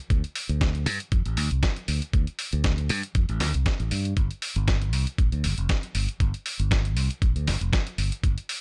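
Nu-disco at 118 BPM in 4/4, with a light 16th-note swing giving the groove a loose, cosmic feel in this short cut from a longer piece. A bright, growly fingered electric bass sits up front, recorded direct and moving between F1 and G2 from 0.1 to 8.3 seconds. Alongside it, a compressed, sampler-style electronic kick delivers a thumpy, gritty punch, also placed up front. A dusty soul sampler-style kit adds hi-hat and a fat snare, carrying until 8.6 seconds. The whole is a dry, gritty hardware recording with a touch of digital ambience, keeping the rhythm section close and groovy.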